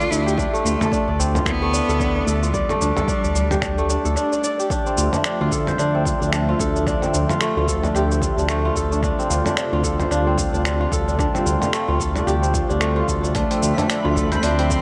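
Earthy and mystical, this organic downtempo excerpt moves at 111 BPM in D dorian with a lightly swung sixteenth-note feel. A crisp, ringing kora plays fingerpicked arpeggios up front throughout, both it and a rich, focused bowed cello carrying tape echo and shimmer reverb. The cello sings a vibrato melody at the opening and returns briefly near the end at 13.3 seconds. Underneath, a smooth, mellow synth bass holds a sustained D with sidechain pumping, while a gritty, tape-warm sampler-style kit of cabasa, finger snaps, hi-hat and toms runs through analog delay, joined at 0.4 seconds by a punchy, layered electronic kick and, early on, a deep, close udu. After a very quiet electronic swell, a detuned, chorused analog pad enters in the background at 4.7 seconds with slow-attack chords, sidechain pumping and shimmer reverb, moving from Dmadd9 to Fadd9/D and back. A twinkling, sparkling granular texture glints in at the very end, all set in an echo-heavy mix with a moderate echo-chamber reverb.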